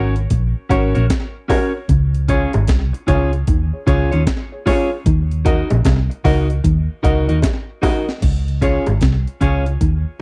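A dark, round, foam-muted electric bass sits up front in this uplifting, laid-back roots reggae excerpt, joined from 0.2 seconds by a gritty, compressed sampler-style breakbeat kit with a thumpy kick, high-tuned snare, hi-hat and crash, and by tight, high-tuned bongos tucked in the background from 1.5 seconds. A woody, slightly detuned upright piano plays stabs, a clean picked electric guitar carries the accompaniment through dub echo, and a very quiet, fingered electric guitar adds a low riff over a swung feel, moving through Gb, Db and Ebm before returning to Db. The sound is a dry, close, 1970s-style studio recording with little reverb.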